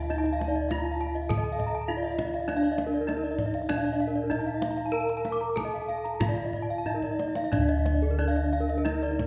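This short cut from a longer Balinese gamelan piece sits in the wet reverb of a recital hall, giving it a shimmering, brilliant mood at a straight pulse. Up front, a bronze metallophone struck with a horn mallet carries the bright, ringing melody. Two more metallophones weave arpeggios above it, both played with wooden mallets, their paired tuning producing shimmering beats; one of them sounds close-miked, dry and full. Underneath, bossed gongs hit with padded beaters supply a round, mellow, soft bass line. The kendang comes in at 0.3 seconds with a tight, hard-handed sound, and its fill from 6.9 seconds leads into a new section at 7.5 seconds.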